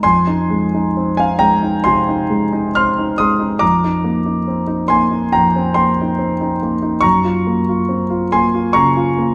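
Impressionist classical solo piano, wistful and hazy, drifts in rubato at 65-72 BPM as an intimate, up-front concert grand with deep bass and audible action noise moves from Fm9 to Cm9/F and on to Gbmaj7#11 at 7.0 seconds, set in a moderate recital hall reverb in this short cut from a longer piece.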